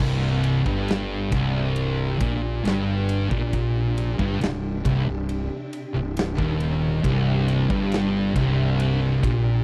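A straight 4/4 pulse from a big rock drum kit, with its punchy kick, medium-tuned snare and ride cymbal, anchors this ominous, hypnotic stoner and doom metal excerpt, where two dark, picked fuzz guitars share a heavy riff, one up front and the other set back, over a growly overdriven fingered bass, while a swarming, detuned granular drone swells in slowly in the background from 1.8 s with its own reverb against an otherwise dry, close 1970s-style studio sound.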